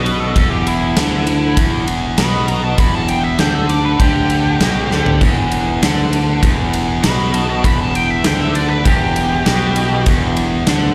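Hard rock in E minor at 99 BPM, driving and menacing, cut from a longer piece and heard as a live gig through the venue's PA with small room ambience and recital hall reverb. A biting, overdriven lead guitar solos from the start with slapback echo and digital delay over a double-tracked, distorted riff guitar, a round, punchy overdriven fingered bass and a huge arena drum kit with bright cymbals and a punchy kick. After a drum fill at 4.9 seconds, a thick, gritty tonewheel organ enters very quietly at 5.2 seconds with sustained chords through a slow rotary speaker.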